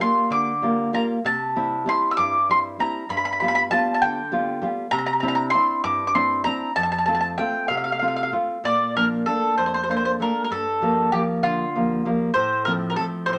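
A lilting, rubato 6/8 sway carries this romantic yet lively Italian folk serenade, a fragment cut from a longer piece. The picked mandolin sings the melody up front with a warm, round, double-string tone, while a full-bodied, deep classical nylon-string guitar fingerpicks a warm accompaniment beneath it, its finger squeaks audible. A moderate studio reverb surrounds the pair, and the tune moves into a new section at 8.6 s.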